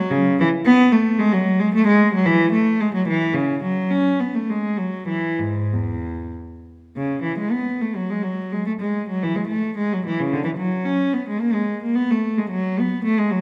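A wet recital-hall reverb surrounds a single up-front bowed cello, its dark, reedy gut-string tone smoothed at the top in period style. This baroque-style suite movement for unaccompanied cello is dance-like and radiant, in E major and 3/4, moving with a rubato feel between 93 and 114 BPM across a range from E2 to C#4. The opening idea returns at 7.0 s, and the passage is cut from a longer piece, ending at 13.4 s.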